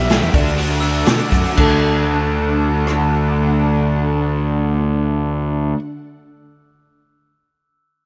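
This short indie rock clip in D major opens with a fuzzy, punchy fingered bass up front, two overdriven guitar riffs, a woody upright piano melody and a lush string machine, all at once, with the 117 BPM tempo slowing through the first 1.6 seconds. The mood is jangly and wistful in a straight 4/4. One guitar is compressed and picked through a phaser, while the raw garage guitar sits in the background with chorus and analog delay. The slightly detuned piano, with audible action noise, carries the melody through slapback echo and analog delay, as the vintage sawtooth string ensemble holds sustained, slow-attack chords beneath it. A vintage acoustic drum kit with a punchy kick, medium-tuned snare, rim clicks, hi-hat and crash plays until 3.0 seconds, joined by a very quiet, grainy tube shaker, and a bright, sparkling glockenspiel adds a bell-like second line from 0.8 seconds. A lush hall reverb gives the mix a big arena sound.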